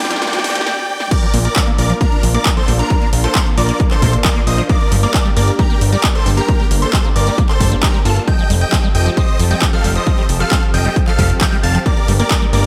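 A huge, euphoric supersaw lead carries the melody across this bittersweet, emotional stretch of uplifting trance, its bright, detuned sawtooth tone pumping against the kick and trailed by analog delay. The opening second is a build-up, with a riser and drum fills from the overdriven techno kit, and a short break just before the drop lands at 1.1 seconds. At that point the heavy, up-front electronic kick enters alongside a plucky square-wave second line high above, and at 1.3 seconds a fat, saturated analog bass joins it at the bottom. Behind them, a squelchy, resonant acid bass spins arpeggios through phaser and diffuse ambient delay, while a lush detuned pad holds sustained chords with chorus and phaser. The harmony moves from G minor to B-flat, back to G minor, then to F with an added ninth before returning to G minor, and the whole mix sits in a dreamy, reverb-soaked hall.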